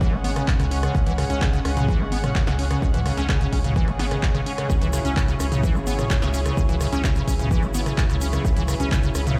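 A trippy, raw acid house excerpt opens on a single minor chord, with a squelchy, resonant square-wave acid riff carrying tube saturation, ensemble chorus and dub echo over a thick, saturated sub bass and a punchy, tape-tinged electronic kick. A smooth, detuned sawtooth pad with chorus and tremolo and a veiled string section bowed con sordino sit far back, both pumping with the sidechain along with the sub, while an analog drum machine adds handclaps, hi-hat, rim click, snare and toms. A grainy, close shaker slips in at 4.7 seconds, and the mix rings in a bare stone room, with little reverb on the parts themselves.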